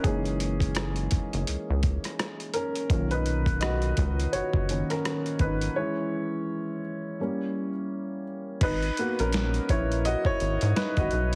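A lazily swung sixteenth-note groove in 4/4 drives this soulful, late-night neo-soul clip, built on a gritty, overdriven sampler-style drum kit with a thumpy kick, rim clicks and a crash, alongside a rubbery, nasal square-wave bass that sits up front. A woody upright piano with long sustain carries the solo throughout, moving over lush chords from F#13 through Bmaj9 to a break at 5.8 seconds, before settling on G#m9 at 8.6 seconds. Light reverb and a heavily compressed, radio-like sound give this excerpt, cut from a longer piece, a dusty, intimate character.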